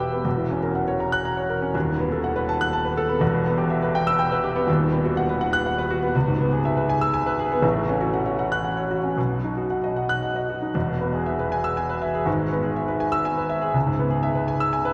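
This 14.9-second cut from a longer classical work opens on an intimate, natural concert grand placed up front inside a wet cathedral reverb with a long, lingering tail. The piano's deep bass and audible action noise keep the instrument vivid even as the space blooms around it. It is a virtuoso piano study in 6/8, played solo with a free rubato feel and a brilliant, sparkling mood. The harmony moves through rich seventh chords and inverted voicings, and a new section begins at 10.8 s. Across the passage, the single piano ranges from the very low bass up into the high treble, filling the cathedral with glittering sound.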